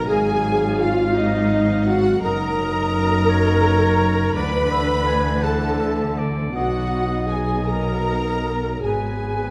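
A dark, warm production with scoring-stage reverb frames this hopeful, moving cinematic excerpt in a rubato 6/8 at around 49-57 BPM, where a distant symphonic violin section carries the melody beside a focused studio violin line, a close viola section accompanies, a dark French horn section holds sustained chords, an up-front double bass section and a background cello section anchor the bass, and a pure, bright flute section and a clear oboe add second lines from 0.1 s over chords moving through Dsus2, B and G#m7.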